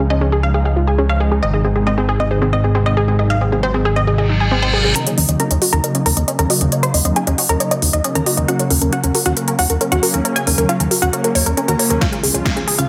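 A straight 4/4 pulse at 136 BPM drives this euphoric, emotional uplifting trance excerpt in Eb dorian: a detuned sawtooth pluck with delay carries the melody while a warbling, wave-folded pluck with delay spins arpeggios under a filter sweep, both over an airy pad treated with chorus and phaser and a fat, saturated analog bass, these four pumping to the sidechain, until a reverse cymbal and riser at 4.2 s usher in a techno kit of punchy snare and smooth hats at 5.0 s for a build-up that closes on a drum fill with a layered electronic kick at 12.0 s.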